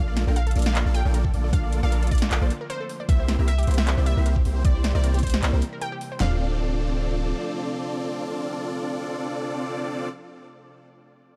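Future bass at 154 BPM in D minor, felt in half-time with a light swing on the sixteenths, this lush, dreamy fragment cut from a longer piece opens in the middle of a drop over Bbmaj7 and C7 before settling on Dm7 at 6.2 seconds. A huge, thick supersaw riff, dense and compressed with a moving notch, pumps against the sidechain and trails digital delay, while a bright, punchy unison pluck carries the melody through the same pumping and echoes. Beneath them, a second pluck with a vintage, warbling character spins arpeggios in the background, and an airy, breathy pad with chorus holds very quiet sustained chords. A deep, mellow 808-style bass sits up front with long, decaying sine notes until 7.3 seconds. Two layered pop kits drive the drop: one with a knocking kick, fat overdriven snare, claps and toms, the other, tape-warm, adding metallic hats and its own fat snare, both placed in a small room and gone by about 6.3 seconds, leaving the synths to ring out in a dark, dry mix.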